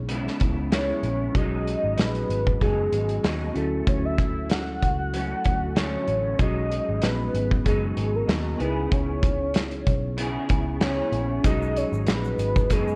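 A laid-back, sunny slice of indie bedroom pop with a gentle swing features a full-bodied, detuned synth lead carrying the melody through phaser and analog chorus. It is set over a twangy, slightly broken-up electric guitar with ensemble chorus and vibrato, a mellow tine electric piano tucked in the background with a cassette tinge, and a dark, round, foam-muted picked bass. A loose, up-front drum kit with a punchy kick and pumping room sound drives the groove, and a grainy egg shaker slips in faintly at 11.4 seconds, all wrapped in small-room reverb and worn, warbling old tape.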